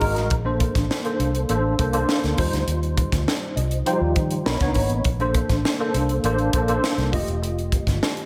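A straight, steady 4/4 groove from a crisp fusion drum kit, with a punchy kick, high-tuned snare and hi-hat sitting up front in a small, pumping room with gated reverb, drives this breezy, urban slice of polished 1980s jazz-funk pop cut from a longer piece. Underneath, a vintage fingered electric bass plays with a dark, round, foam-muted tone, while a worn, slightly out-of-tune tine electric piano, lightly overdriven with ensemble chorus, comps mellow chords from Bbmaj9 through Eb69 and Bmaj9 to F9. The piano also adds fills at the very start and again from 3.3 to 5.1 seconds, all under a light studio reverb.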